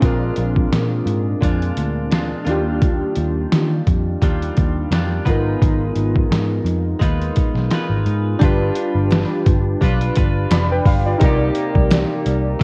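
A hazy, cassette-worn home recording with light reverb opens this nostalgic, dreamy indie and bedroom pop excerpt at 86 BPM with a gentle sixteenth-note swing, where gritty, pitched-down sampler drums with a thumpy kick sit up front, a dark, foam-muted picked bass rounds out the low end, a bright, twangy direct-recorded clean guitar drifts with analog chorus and warbly pitch wobble, detuned lo-fi synth keys shimmer through a filter sweep over chords moving from Bb7 to Cm7, and a crisp, very quiet group handclap joins from 9.1 to 12.1 seconds.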